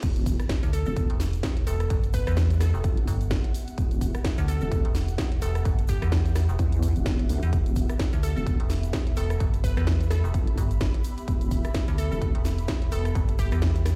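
Aggressive and gritty, this bass house drop in E minor runs at 128 BPM with a swung sixteenth-note feel. It opens on a very quiet electronic impact that ends at 1.9 seconds, while a punchy, up-front kick and a garage kit of crash, hi-hat, rim click and cracking snare drive the beat, with a grainy tube shaker tucked in the background. Two up-front basses fill the low end: a nasal, saturated vowel-sweep wobble bass with chorus and sidechain pumping, which stops at 12.3 seconds, and a metallic FM bass with overdrive and pumping, which enters at 0.6 seconds. Above them sit an ethereal pad with ensemble chorus, built-in reverb and sidechain pumping, and a glassy wavetable pluck with chorus and digital delay, all sounding as if played on a big system in a bare room with large studio reverb.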